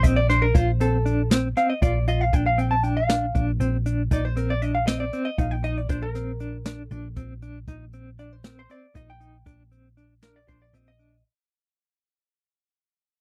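A vintage hollow-body jazz guitar takes the solo from the first second, its clean, picked tone sitting dark and up front as it carries the melody through this intricate, driving slice of progressive instrumental band music in 7/8 with a straight feel. Beneath it, a mellow electric guitar plays fingered arpeggios with tremolo, its sound smooth and shadowed. A hollow-body short-scale electric bass, picked and amped, anchors the low end with a round, punchy presence close in the mix. A jazz drum kit played with brushes brings hi-hat, a medium-tuned snare and a boomy kick, captured acoustically in a studio room. The harmony moves from Bbadd9 to Eb5/Bb at 4.1 seconds. The dry, close 1970s-style recording fades out across the whole passage, which is cut from a longer piece.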